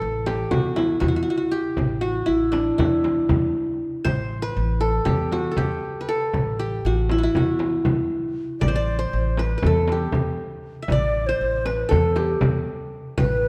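A bright-edged, plectrum-plucked qanun carries the melody up front in this melancholic, hypnotic Turkish makam ensemble piece, set in A makam huseyni with a tuning of A4 = 443 Hz. The music moves in a straight 9/8 at 237 BPM counted in eighths, and the whole clip stays within a single section cut from a longer performance. Beneath the qanun, a woody pizzicato upright bass on steel strings holds the low end, also placed up front. A crisp metal-shelled darbuka sits in the background alongside a deep, large frame drum played with soft hands, its sound compressed and saturated, entering at 0.3 s. At 8.6 s a breathy, reedy end-blown ney joins as a second line, close-miked, tongued and colored with vibrato. A moderate concert hall reverb gives the ensemble a spacious, resonant setting.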